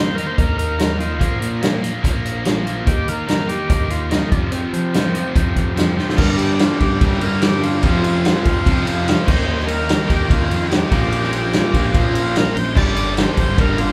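Classic rock in G minor at 145 BPM, swaggering and brooding, with a gritty, overdriven tonewheel organ carrying the melody through a slow rotary speaker over a double-tracked overdriven guitar riff, a growling overdriven bass in the background, and an up-front vintage drum kit with a tight kick and medium-tuned snare that enters at 0.2 seconds. After a drum fill at 6.0 seconds, the second section moves through Gm, F, Eb and Bb chords as a bright, tight distorted guitar joins the riff in the background at 6.2 seconds, along with a barely audible shouting second organ holding sustained chords with key click and chorus vibrato. The band sounds like it's playing live in one large studio room with moderate reverb, and the clip is cut from a longer piece.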